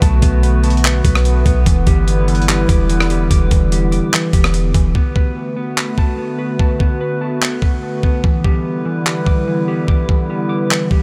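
A dry mix opens this melancholic, hazy cloud-rap fragment, cut from a longer piece, where a hollow, flute-like pad holds sustained chords with chorus and sidechain pumping while a dark, clean electric guitar plays fingered arpeggios through spring reverb and tape echo. Up front, a gritty, compressed sampler-style drum kit lays down a half-time groove of thumpy kick, handclaps, hi-hat and rim click, joined by a deep, boomy 808-style bass that drops out at 4.9 s. The harmony moves between Bm7 and Em7 throughout.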